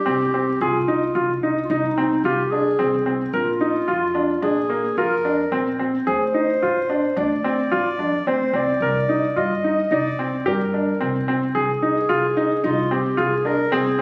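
Captured on a phone in a recital hall with a moderate bloom of reverb, this hypnotic yet urgent fragment of contemporary chamber music moves in an uneven 5/4 at 110 BPM, with a mellow, smooth-topped classical clarinet carrying the up-front solo melody over brilliant, intimate baby grand piano arpeggios (their short sustain and audible action noise close at hand) and a woody, thumpy pizzicato upright bass on gut strings, all cycling through Fm7/C, Bb, Dm7b5 and Cm9.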